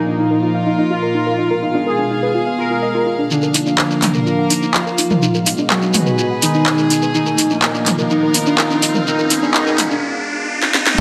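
Dark and melancholic, this 125 BPM melodic techno passage sets a fat, wave-folded analog synth brass melody over a lush, detuned unison pad, a soft round pluck arpeggio in the background, reedy gut-string chamber strings and a barely audible warbling analog drone, with the brass, pad and pluck pumping to the sidechain; a grainy, close shekere joins at 3.3 seconds and an up-front, tape-warm techno kit with cracking snare, smooth hats, claps, toms and crash follows at 3.5 seconds, as a filter-swept build and a riser with sub drop from 5.6 seconds lead to a closing drum fill, all in a moderate hall reverb.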